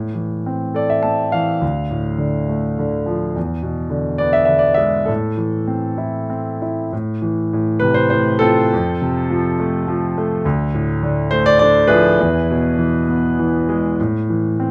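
This classical excerpt for solo piano is lyrical and bittersweet, with a cool mood, moving in 3/4 at roughly 95 to 107 BPM with a free, rubato feel in A harmonic minor. A concert grand plays throughout, spanning D2 to A5 with a clear, natural tone, deep bass and long sustain, placed up front in a lightly reverberant room. The harmony circles from A minor through D minor and E7, then the opening phrase returns at 6.9 seconds and passes through F, D minor and E before settling back on A minor at 14.0 seconds.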